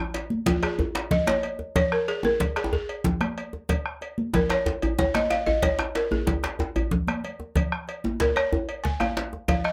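West African traditional drum ensemble in an earthy, festive 12/8 groove, where a woody, buzzing balafon played with rubber mallets carries the melody up front over a cracking, close djembe, a second medium-tuned djembe, bright high-tuned congas with a saturated edge, a deep, dark, vintage-toned bombo and a metallic cowbell, all in a modest booth ambience for this short passage cut from a longer piece.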